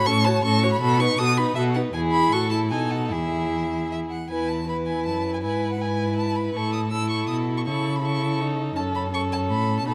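In a 3/4 at 161 BPM, played with rubato, this spirited, cheerful classical-period movement for string quartet moves briskly in E major, cut from a longer piece. The first violin carries the melody up front, singing high between E5 and E6 with vibrato, portamento and an expressive, warm tone. Beneath it, the second violin and viola hold smooth, even inner lines with vibrato, while the cello anchors the bass with a rich, soft-attacked sound, its own portamento and expressive phrasing placing it up front as well. The harmony turns through F#m/A, B7 and E in the opening phrase, and a second statement of the theme begins at 4.3 seconds, moving through E/G# and A/C# before settling on F#m near 8.8 seconds. Close, detailed microphones capture each bow, framed by a moderate concert hall reverb with a 2.2-second decay.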